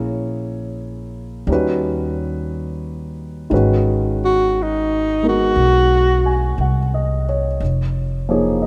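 A grand piano with an intimate tone and audible action noise opens this smoky, wistful jazz ballad alongside a woody, pizzicato upright bass, both up front at a slow, swung 59 BPM in 4/4. At 4.2 seconds a breathy alto saxophone with clear vibrato steps forward with a short melodic phrase, falling silent at 6.6 seconds while the harmony moves from Bbm7b5 and Eb7alt through Abm9 to Db69/F. A moderate plate reverb gives the rough home demo mix a soft halo, and the fragment ends at 8.7 seconds, cut from a longer piece.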